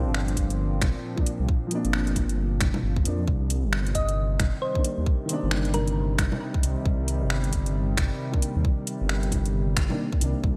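A deep, rumbling detuned saw bass sits up front in this rainy, wistful future garage excerpt, joined by a tight electronic kick and a layered garage kit of bongos, finger snaps and metallic hats with a swung sixteenth-note feel. Beneath them, a warbling, lo-fi tape-like pad holds nostalgic chords with 12-bit sampler grit and a boxy, woody upright piano plays accompaniment, both pumping with sidechain compression. From 4.0 to 6.1 seconds a round, tine-like thumb-piano-style synth pluck adds a short melody through chorus and a diffuse ambient delay, all under a light reverb as the harmony moves from Bb to Cm9.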